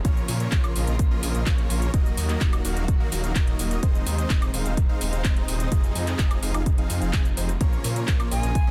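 Euphoric and emotional, this festival progressive house excerpt in Bb minor drives at 127 BPM in straight 4/4, cycling through Bbm, Ebm, Ab/Eb and Fm7. A huge, bright detuned supersaw riff with dub echo soars over a thick, chorused saw bass with tube saturation and lush bowed symphonic strings in the background, all three pumping against a punchy kick that sits up front. A house kit of handclaps, metallic hi-hats, shaker and woodblock fills out the groove in a dense, heavily limited master, and a breathy concert flute slips in on a single high note at 8.3 s.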